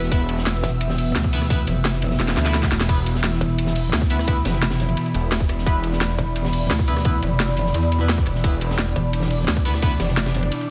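The rhythm drives at 173 BPM in a straight 4/4, with a tight, overdriven electronic kick and an up-front drum and bass kit of cracking snare, bright hats, rim clicks and crash cymbal, while a gritty breakbeat kit with a high-tuned snare and dark cymbals sits in the background of this aggressive, mechanical slice of dark technical drum and bass. A drum fill arrives at 2.2 seconds, and a very quiet electronic swell follows at 2.4 seconds. Underneath, a thick, detuned saw bass with tube saturation holds the low end until 6.2 seconds and returns briefly at 8.4 seconds, while a metallic, distorted FM wobble bass enters at 0.6 seconds and stays up front. A sweeping resonant pad carries sustained chords with sidechain pumping, and an ethereal, airy pad with built-in reverb floats higher up, pumping as well. A nasal, band-passed chord stab with phaser, cassette tape and digital delay cuts through, all set in light digital ambience under a dense, heavily limited modern master.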